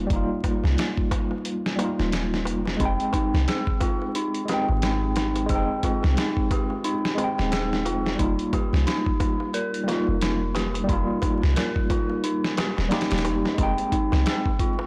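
A worn, slightly out-of-tune tine electric piano with tremolo and tape echo opens this brooding, cinematic trip hop excerpt over a deep, round 808-style bass, joined almost at once by a gritty, compressed sampler-style drum kit with a thumpy kick up front and a small clay-shell darbuka in the background, before an eerie, inharmonic FM synth bell with chorus and tape echo adds arpeggios from 2.8 seconds, the whole excerpt swinging at 89 BPM in F minor between Ebadd9/F and Fm9 inside a blown-out, overdriven recording with vinyl crackle and light reverb.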